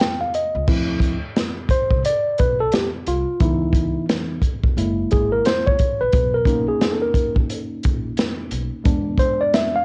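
Jazz-hop with a nocturnal, cool mood, moving at 88 BPM in 4/4 with a 16th-note swing, cut from a longer piece. A tine electric piano opens with a short fill in the first 0.7 seconds, then carries the lead as a solo through the rest of the track, its worn, slightly out-of-tune tone sitting clean and direct up front, coloured by cassette tape and plate reverb. A vintage drum kit of kick, snare, hi-hat and crash plays throughout, with a punchy kick, medium-tuned snare and rolled-off top, roughened by 12-bit sampler grit and tape. An upright bass enters at 0.5 seconds, plucked on steel strings with a woody, dark tone that stays in the background. The harmony moves through Dm7, C#m7, F#9 and Bmaj7 before landing on E7, all framed by light reverb and the muffled, lo-fi character of a home cassette recording.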